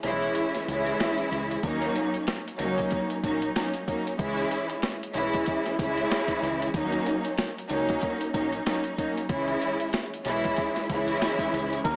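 A dark, bowed string section with vibrato and portamento sits up front from the start of this moody, reflective boom-bap hip-hop cut, its lush tone softened by cassette-tape coloring and filtering. Alongside it, a compressed, pitched-down sampler kit with a thumpy kick and high-tuned snare drives a swung groove, while a round, foam-muted fingered electric bass stays in the background as the harmony moves between C#m and D#m7. At 11.8 seconds a raspy, cup-muted jazz trumpet slips in just as the clip ends, all set in a small room with vinyl crackle and a small-speaker sound.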